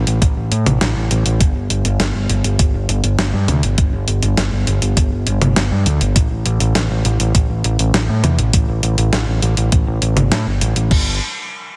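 Moody and nocturnal, this short synthwave excerpt in straight 4/4 pairs an up-front overdriven picked electric bass, direct and amped with sidechain pumping and a low-pass filter, with a thumpy, sampler-style electronic kick and a clean 12-bit digital drum machine of crash cymbal, hi-hat, medium-tuned snare and toms, both drum parts re-recorded in a small room, all under light reverb and a dense, heavily limited modern master.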